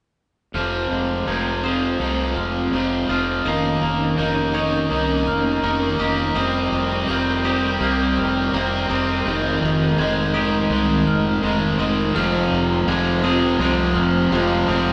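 Melancholic and brooding, this slow rock excerpt in F minor moves at 83 BPM as a build-up over Fm7, Eb7/F, Cm7/F and Abmaj7/F chords, with a live band sound in a wet stone room. A bright, raw garage guitar with overdrive drives the riff up front over a growly fuzz fingered bass. In the background, a twangy, scooped clean guitar with tremolo and a ringing, bell-like glockenspiel with soft plastic mallets play arpeggios, while a very quiet, brassy, warbling, detuned analog pad holds sustained chords, and a crunchy overdriven guitar joins the riff at 12.2 seconds.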